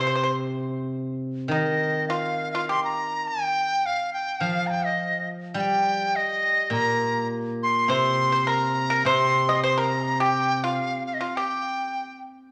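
A wet recital hall reverb surrounds this graceful, tender passage, cut from a longer piece for a Chinese traditional chamber ensemble. It moves at about 104 BPM in 2/4, with a rubato, freely breathing feel. Up front, a large bamboo dizi carries the melody throughout; its reedy, buzzing-membrane tone is pure and bright, tongued and shaded with vibrato. Beneath it, an acoustic pipa played with fingerpicks adds a dry, percussive second line, dropping out at 3.1 seconds and returning at 7.9 seconds. A steel-string zither, also fingerpicked and placed forward, supplies a ringing, silvery accompaniment until 10.8 seconds.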